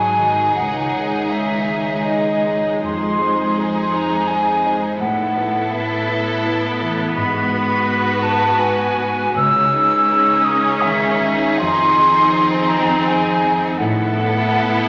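A sorrowful, moving cinematic film score for orchestra in a flexible, rubato 3/4, where an airy, crisp-attacked silver flute sits up front over a vibrato-rich violin section melody and a more distant second violin line. Lush, bright violas sound from a distance, a mellow ringing harp's arpeggios and a deep-bassed piano sit in the background, and intense bowed cellos lie beneath, with the whole ensemble set in a wet scoring-stage reverb throughout this 14.9-second excerpt cut from a longer piece.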